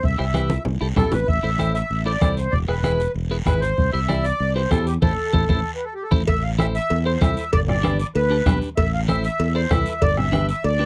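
A reedy, sweet accordion with a light tremolo tuning carries the melody up front in this fiery, driving cumbia excerpt in A minor, set at a brisk 192 BPM in a straight 4/4. Beneath it, a punchy fingered electric bass sits up front, while a clean, picked electric guitar adds compressed accompaniment from 0.2 seconds. The percussion bed combines a vintage, band-limited bombo struck with a soft beater, low-tuned congas with hard hands ringing in the background, and a raspy, saturated guiro. A drum fill opens the passage and a full-band accent marks the close of the first section, after which ringing metal-shell cowbell and timbales join at 6.3 seconds as the harmony moves through A minor and G. The whole has the dry, close sound of a 1970s studio with a touch of light reverb.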